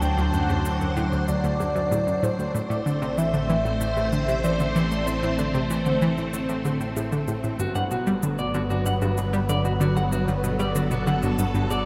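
A swirling, up-front phased string machine holds sustained chords through this luminous, expansive stretch of sequencer-driven ambient space music, joined by a round, horn-like synth lead carrying the melody until 7.0 seconds, a bright analog pluck riff with tape echo, an evolving pulse-wave drone bass, quiet electronic shaker and bongos, and a twangy clean electric guitar whose arpeggios enter at 7.6 seconds, the whole excerpt set in a vast, echoing cathedral reverb.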